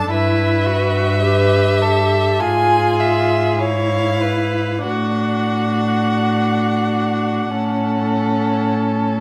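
Classical slow romantic movement for string quartet, tender and lyrical, unfolding in D major at 45-53 BPM in 4/4 with a rubato feel, heard as a short cut from a longer piece. The first violin carries the melody in a focused, vibrato-rich voice high in its range, falling silent at 8.7 s, while the second violin sings a second line with a smooth top and gentle warmth. The viola fills in the accompaniment with an even, smooth tone, and the cello anchors the bass close and up front, its bowed sound full and steady. The harmony moves from Em/G through a tense C#7#9/G# at 2.4 s to a settling D/A and finally A, giving the brief passage a sense of yearning that comes to rest. Each player is a single bowed instrument, and the recital hall's reverb lends the quartet a spacious, glowing bloom.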